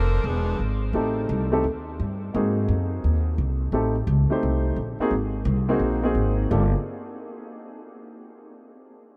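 A clear saxophone section with light vibrato opens this dramatic, swinging big band excerpt over a woody, thumpy pizzicato upright bass, then drops out by 0.6 seconds as a present baby grand piano enters at 0.9 seconds to comp through half-diminished and dominant chords, all set in a vast, echoing space with a huge ambient reverb.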